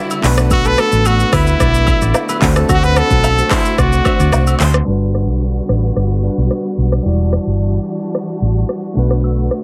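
Romantic and sunny, this short afrobeats excerpt in G major moves at 110 BPM with a straight 4/4 feel. A bright, smooth-topped pop trumpet sings the melody up front until 4.6 seconds, while a clean tine electric piano plays accompaniment and warm bowed strings hold sustained chords in the background. A crisp, ringing fingerpicked kora riff with delay plays behind until 5.8 seconds, an overdriven electronic drum kit with a deep kick, smooth hats, handclaps, rim click and shaker drives things up front, and close, dry agogo bells and woodblock add percussion. Underneath, a dark, round, punchy hollow-body bass anchors chords moving from Bm7 and D7 to Gmaj7 and Em9, and a filter sweep runs from 4.9 seconds to the end.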